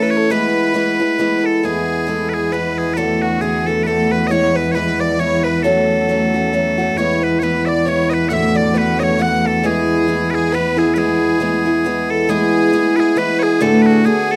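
Celtic folk waltz in E mixolydian at 135 BPM with a swung, rollicking lilt, where piercing bagpipes carry the melody up front over a rich, earthy fiddle second line and a woody, boxy picked acoustic guitar picking through E, D6 and F#m, while a distant, biting bowed cello drone on E enters at 1.6 seconds and drops out at 12.3 seconds, all captured in a dry, close 1970s-style studio sound with light reverb in this excerpt from a longer piece.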